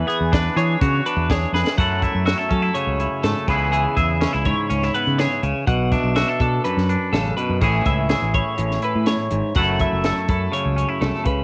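A dry home recording on cassette carries this bright, intricate math rock and midwest emo cut from a longer piece, moving at 123 BPM in a straight 4/4 through E7, F#m7, C#m7, Bm7 and Amaj7. An up-front, twangy, scooped electric guitar picks the accompaniment while a chorused, compressed twelve-string electric guitar spins high arpeggios through analog delay. An overdriven, growling fingered bass and a compact cocktail kit with a punchy kick and high-tuned snare, entering at 0.1 seconds, hold the low end, with a drum fill at 1.5 seconds leading into a new section at 1.8 seconds.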